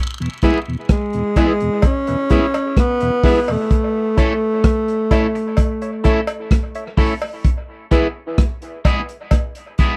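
A dry, close 1970s-style studio sound with light reverb frames this spacious, hazy dub reggae fragment, where a crunchy, gritty breakbeat kit sits up front alongside a round tonewheel organ turning through a slow rotary speaker, while a twangy guitar at the edge of break-up, a hollow percussive organ stab and a cowbell trail dub echo, and a breathy tenor saxophone carries the melody from 0.9 to 6.3 seconds.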